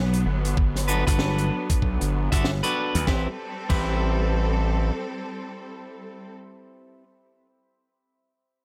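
Punchy, bright slap bass anchors the low end of this gritty, funky glitch hop excerpt at 96 BPM in 4/4, swung on the 16ths in A dorian, opening on a drop that runs until 3.1 seconds over a Gmaj7 before the harmony moves to Am7. Alongside it, a distorted, aggressive synth bass built from square, sawtooth and sine tones with oscillator sync and a resonant filter sweep sits up front, while an electronic kick knocks from 0.6 to 3.9 seconds. An open jazz drum kit adds dark cymbals, hi-hat, rim clicks, shaker and a high-tuned snare in an acoustic studio room. Behind them, a lush symphonic string section holds sustained bowed chords with vibrato and a smooth top, roughened by vintage 12-bit sampler grit and sidechain pumping. A clean, picked electric guitar plays stabs from 0.9 to 7.0 seconds, colored by vibrato, sidechain pumping and dub echo, all set in a small room ambience.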